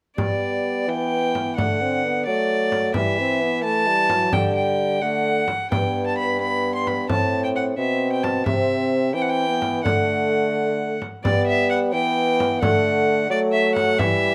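A single bowed violin with a rich, reedy gut-string tone sits up front, carrying the melody of this stately, festive renaissance-style consort dance in a straight 6/8, played in period style. Beneath it a clear trombone supplies accompaniment and a bassoon with a soft attack holds the bass, each with a classical-style light vibrato, while a small, bright frame drum with a compressed, saturated edge keeps the dance moving. The parts play together throughout this fragment from a longer piece, set in a moderate stone room whose reverb adds gentle depth.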